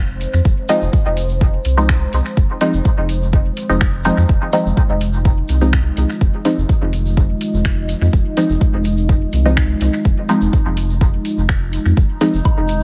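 An up-front, tape-warm electronic kick drives this deep, meditative dub techno excerpt at 125 BPM in F minor, with a round analog bass pumping beneath it on a single Fm7 chord. Muted, filter-plucked dub chord stabs with chorus, phaser and dub echo ride over a dark, warbling, detuned ambient pad with a slow attack. A deep house kit adds finger snaps and metallic hats through dub echo, alongside a grainy, bright egg shaker. Near the close, a glassy, drifting texture appears at 12.2 s and a background woodblock with echo at 12.5 s, all within an echo-heavy mix of light digital ambience.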